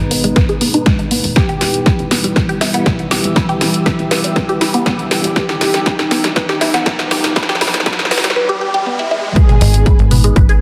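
A straight 4/4 pulse at 120 BPM drives this hypnotic, melancholic melodic techno cut, taken from a longer piece: an overdriven, heavy electronic kick sits up front with a layered techno kit of punchy snare, hi-hats and toms, while a tight, driving sawtooth-and-square sequencer bass with tube saturation pumps beneath a lush, detuned unison pluck arpeggio treated with phaser and delay. Behind them, a nasal analog pad holds dark sustained chords moving from G#m to Em, joined by the dark texture of a deep ambient pad with built-in reverb, and a soft, mellow supersaw enters briefly at 1.4, 5.4 and 9.4 seconds with dub echo. Filter sweeps, drum fills and a background riser from 4.3 seconds build toward the drop at 9.4 seconds, all set in a wet recital hall reverb under a dense, heavily limited modern master.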